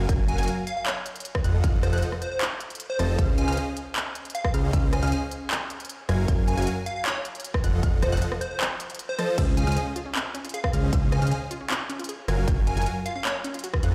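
Future bass at 155 BPM in a half-time feel, bright and playful in Db major, built on lush supersaw chords cycling through Gbmaj9, F7b9 and Dbmaj7 over a fat, thick analog bass and a punchy, layered electronic kick placed up front, with a trap kit adding crisp hats, handclaps, rim clicks and crash. A catchy square-wave unison lead carries the melody through phaser, 12-bit sampler grit and tape echo. High warbling vintage pluck arpeggios sit in the background, and a second, lower pluck arpeggio joins at 9.4 seconds, the synths pumping to the sidechain in a dry mix that sounds played through a big system in a bare room.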